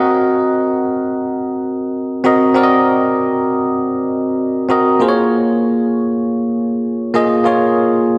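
A bell-like tine electric piano plays alone in this mellow, smooth afrobeats fragment at 98 BPM with a swung sixteenth-note feel, its bright, clean tone sitting up front through a lush chorus, moving from Cm7b5 to Bbm7 at 5.0 seconds while a wet plate reverb soaks the short cut in a dreamy haze.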